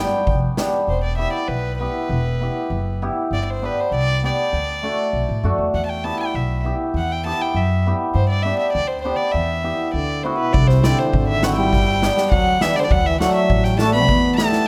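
A short cut from a longer bittersweet, festive klezmer tune in E minor, it opens at 100 BPM in 2/4 with a pure, floating violin carrying the melody over shimmering, ringing hammered cimbalom and a woody, thumpy pizzicato upright bass on gut strings, with a brief touch of trombone and a boomy kick and snare. The tempo keeps speeding up throughout, and at 10.0 seconds the punchy, jazz-style trombone returns with light vibrato as a second line. At 10.5 seconds the polished street-band drum kit comes back for a new section moving through C, G and D before landing on E minor, all captured up close with light reverb.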